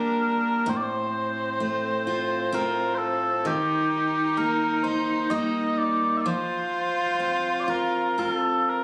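A mournful, haunting Celtic slow air in 3/4 at 64 BPM, this fragment of a longer piece moves with a free, rubato feel over Gm, F/A, Eb and F5 chords. Mellow, sweet small bagpipes carry the continuous, vibrato-laden melody up front, while a cello plays a soft-attacked, sul tasto second line with an airy bow and intimate closeness. A bright, full-bodied picked steel-string jumbo guitar supplies the accompaniment. The whole is heard through a moderate recital-hall reverb, captured on a phone in the room.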